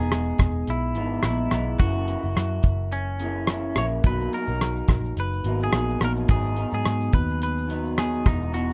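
This short excerpt opens with a semi-hollow electric guitar carrying the melody alongside a second electric guitar through a small old amp, with a muted picked electric bass underneath, all sounding from the very start. A damped 70s drum kit joins at 0.1 seconds, with a tight, dry kick, hi-hat, rim click and shaker sitting up front. The piece is lonely, hazy indie bedroom pop in G# minor at 107 BPM in 4/4, with a gentle 16th-note swing as the chords move through Emaj7, F#7, Bmaj7 and G#m7. The accompanying guitar is bright, twangy and slightly broken-up, its lo-fi tone smeared by lush chorus and a warbly pitch drift, while the picked lead is clean, compressed and hollow-bodied with a subtle chorus. The foam-muted bass is round, dark and amped, and a moderate small-room reverb sits within a dark, warm production.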